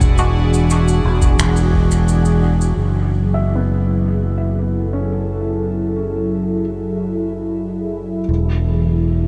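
Deep, spacious ambient dub, cut from a longer piece and soaked in a huge reverb, built on an airy, breathy pad holding chords up front and a growly, overdriven fingered electric bass. An electronic kick drum with a deep, tape-warm thump and a dub-echoed cabasa with finger snaps drop out by 2.7 seconds, while a muted, detuned dub chord stab with phaser and 12-bit sampler grit sits in the background over that opening stretch. From 2.8 seconds, filter sweeps move through the pad and a felt-muted upright piano, whose soft, boxy arpeggios carry audible action noise and analog delay until 8.3 seconds.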